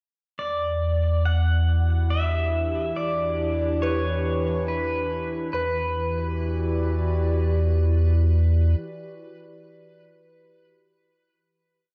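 A dark, warm haze of concert-hall reverb surrounds this short, serene ambient piece in E dorian, moving at a slow 70 BPM in 3/4. A deep, round sine sub bass sits up front on a sustained E root from 0.4 seconds, fading out as a warbly, nostalgic tape-like pad fades in from 1.7 seconds, its detuned, mellow chords coloured by chorus and phaser. Over this, a bright, twangy pedal steel guitar plays arching motifs with volume swells and slide, its clean, compressed tone trailed by delay. From 3.8 seconds a soft, pure FM synth bell scatters gentle arpeggio notes in the background, treated with chorus, phaser and delay, and it rings on after the other parts end. The harmony moves from Em7 to G/E and settles back on a final Em7 chord at 5.5 seconds, leaving a reflective calm.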